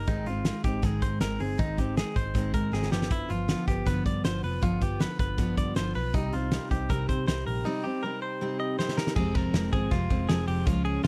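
A picked steel-string acoustic guitar, full-bodied and up front, opens this bittersweet, restless fragment of jangly indie pop alongside a bright, twangy clean electric guitar playing arpeggios and a round, foam-muted vintage bass, with a loose indie drum kit joining at 0.1 seconds. The kit has a punchy kick, fat snare and dark cymbals in a pumping studio room, with fills near 2.7 and 8.8 seconds, while the chords move from Ab through G7 and Cm before settling on Fm as a new section begins at 9.2 seconds. The sound is dry, with little reverb.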